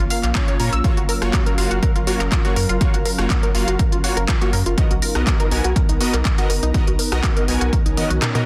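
A dense, heavily limited modern mix with light reverb carries this uplifting, euphoric progressive house excerpt, where an overdriven, punchy electronic kick sits up front over a crisp house kit of handclaps, hi-hat, rim click and toms, while a round, deep analog bass, tight detuned sawtooth arpeggios with dub echo, full-bodied supersaw stabs and an airy, breathy pad pump with the sidechain, before a very quiet swell enters at 7.9 seconds and a drum fill arrives at 8.0 seconds.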